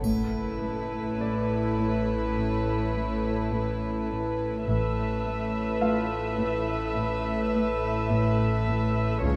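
Cinematic suspense film score at a slow 52 BPM in 4/4, this brief cut from a longer piece hangs on a single Asus2 chord and carries a mysterious, tense mood. A chamber violin section carries the melody in a narrow band between B4 and C#5, bowed sul tasto with a soft attack and a floating, pure tone, while an intimate, close-miked viola section plays accompaniment up front with light vibrato. Beneath them, one very quiet cello section plays a riff and a second, richer cello section joins the double basses on the bass line, both bowed sul tasto for a pure, floating, symphonic depth. An organ-like drone of sine tones in unison, with ensemble chorus and its own built-in reverb, sustains underneath with a slow attack and long release. A glassy, ethereal glass harmonica holds sustained chords with a vintage, band-limited sheen, and a bright grand piano adds brilliant, short-sustain texture in the background until 9.3 seconds. 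A close, dry triangle sounds faintly only until 2.3 seconds, and a moderate scoring-stage reverb gives the ensemble a sense of space.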